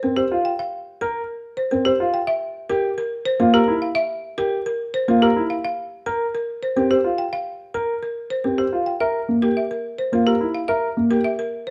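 Set in a dark, warm production with light reverb, this bright, hypnotic excerpt of minimalist classical pattern music in 3/4 features a woody, rustic folk marimba with hard mallets carrying the melody, a clear, worn concert grand piano spinning arpeggios, and a mellow, intimate baby grand piano with audible action noise providing accompaniment over chords moving from Bb5/C to a rootless C7sus4 and on to Bb5.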